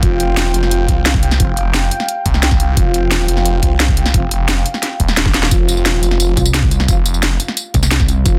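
A snarling, detuned saw bass with fast attack and tube-saturated distortion anchors this dark, aggressive technical drum and bass excerpt at 175 BPM over Fsus2. From the first beat it plays alongside an overdriven, knocking electronic kick and an up-front kit of cracking snare, bright hats and tambourine with a fill at 5.3 s. Meanwhile a dark classical-style brass ensemble fires tape-echoed stabs and a deep, moody chorused pad pumps softly in the background, before a heavy, mellow pulsing pluck wobble bass on C2 joins from 6.4 s in a dense, heavily limited, dry mix.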